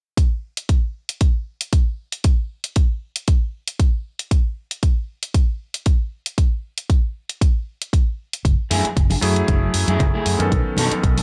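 Groovy and cosmic, this nu-disco excerpt at 116 BPM in F# dorian opens with a punchy, up-front electronic kick and bright hi-hats swinging lightly on the sixteenths, then from 8.4 seconds a growly fingered electric bass arrives under an F#m9 chord, joined by a dark, slightly broken-up electric guitar riff coated in lush chorus, 12-bit sampler grit and slapback echo, distant congas in the background, and at 9.2 seconds a vintage electric grand piano with clangy lows, long sustain, sidechain pumping and its own slapback echo, all in a dry mix that moves to B9 before the cut.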